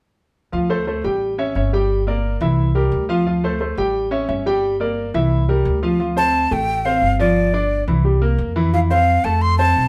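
This fiery, danceable salsa excerpt in D minor opens at 0.5 s with a clear concert grand piano and an upright bass playing together at a brisk 176 BPM in a straight 4/4. The piano sits up front as accompaniment, its smooth, vintage tone carrying deep low notes and a short sustain. Beneath it, the pizzicato bass gives a woody, thumpy pulse from its gut strings. The harmony cycles through Dm7, A7, Gm and C7 twice before a new section arrives at 6.0 s, moving through Dm7, G5, C7 and Fmaj7. At 6.2 s a breathy, bright concert flute takes the melody, close-miked and up front with a crisp attack, reedy edge and vibrato. The band plays live in one room, wrapped in a moderate studio reverb.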